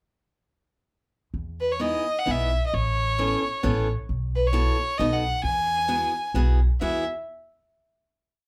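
A woody, thumpy upright bass enters at 1.3 s plucking root and fifth on the main beats of this whirling, charming musette waltz in E major at 131 BPM with a rubato feel, quickly joined by a bowed violin with light vibrato spinning a biting, motif-based melody in period phrases and a bright picked steel-string guitar adding close-voiced backbeat chords with audible finger squeak, moving from Emaj7 through Aadd9 and B7 to settle on an Eadd9 final chord at 6.8 s, heard from further back in a small room.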